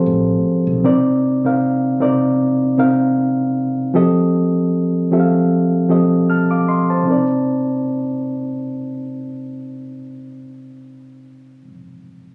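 A mellow reed electric piano sits up front for the whole recording, its reedy, clean tone coming through built-in speakers as it carries the accompaniment across a range from C3 to F6. This sultry, late-night R&B fragment is cut from a longer piece and moves at 77 BPM in 4/4, with a light swing on the sixteenths, in C dorian. A mellow fretless electric bass appears only briefly, from 0.1 to 0.8 s, sounding dark and round with a direct, amped character and a subtle chorus. The harmony alternates between F9 and Cm9, and a new section begins at 7.1 s. The sound has a small-room, club-like reverb and compression, as if captured on a phone in the room.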